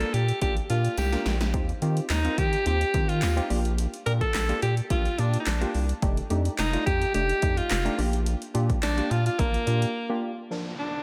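An edgy, forceful alto saxophone carries the melody up front in this carefree, euphoric dance-pop clip, its light vibrato trailed by delay and slapback echo over crisp, detuned wavetable chord stabs that pump with sidechain. A round, deep analog bass pumps with sidechain up front while a punchy, overdriven analog drum machine drives handclaps, hi-hat, kick and snare, joined by a very quiet, jingly tambourine, with a drum fill at 1.0 seconds and a break at 9.9 seconds before an electronic downlifter arrives at 10.5 seconds. A lush hall reverb gives the mix a big arena sound.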